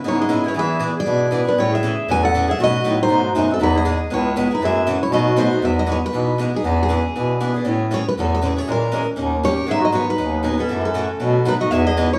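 A brisk swing at 237 BPM in 4/4 drives this charming, lively fragment of acoustic jazz manouche in E major, with a boxy, up-front picked swing-style rhythm guitar comping through chords like C#m7, Amaj7 and B7b9 while a bright bass clarinet carries the low line with vibrato and scooped notes. A picked steel-string acoustic guitar takes the melody with a warm, fresh-stringed tone and audible finger squeak, and a warm, breathy subtone clarinet adds a soft-edged, vintage-flavoured second line that drops out at 5.5 s and returns at 9.4 s. The band sounds like it's playing live in one room, bathed in a generous, wet studio reverb.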